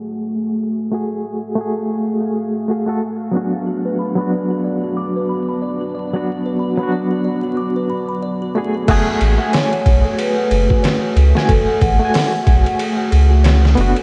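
A barky, reedy electric piano with light overdrive, fast tremolo and tape echo opens this cinematic, melancholic trip hop excerpt at 92 BPM in F# harmonic minor, over a deep, dark detuned pad and a filter sweep, all in a dreamy, reverb-soaked mix with vinyl crackle. A delicate, tinkling music box enters at 3.7 seconds with gritty arpeggios, and at 8.9 seconds a compressed, pitched-down, overdriven sampler-style drum kit with a thumpy kick arrives alongside a round, soft dub sub bass, both up front, as the chords return to F#madd9. A mellow vibraphone played with soft mallets, ringing with fast motor vibrato and tape echo, carries a brief airy melody from 9.5 to 12.8 seconds.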